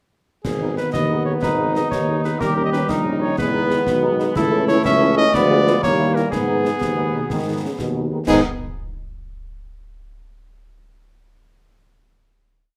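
A military-style march for wind band in G# minor, stern and resolute, moving in a straight 6/8 at 123 BPM over dotted quarters. A soft-attacked cornet carries the melody up front, with a clear, vintage-toned tuba playing bass on the beats, a marching snare over bass drum with dark clash cymbals, a mellow woodwind section with light vibrato adding a distant counter-melody from 0.9 s, and French horns offering after-beat chords beside the background trombone section, which answers at phrase ends. The harmony passes through D#7, Emaj7 and a Ddim7 to D#7b9 before returning to G#m, and the short piece closes on a final chord at 8.3 s in a moderate large-studio reverb.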